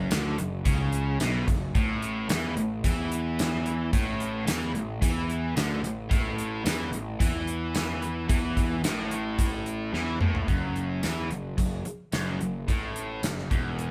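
A gritty, brooding classic rock fragment opens on a bright, double-tracked distorted guitar riff over a dark, round fuzz bass, moving from F#5 to A5; an up-front gated 80s drum kit with a tight kick, medium-tuned snare, hi-hat, tambourine and toms joins at 0.1 seconds, the band playing live in one room with moderate studio reverb, until a drum fill at 9.9 seconds leads into a new section on F#m at 10.5 seconds.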